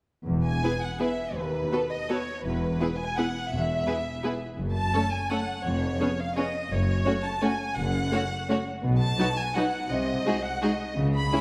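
Elegant and sweeping, this fragment of an orchestral ballroom waltz sways with a lilting rubato in three as an up-front violin section sings a rich, vibrato-laden melody over a more distant second violin line, a lush, close viola accompaniment, and smooth, even cellos and double basses that anchor the bass from 0.3 seconds, all carried by a moderate concert hall reverb.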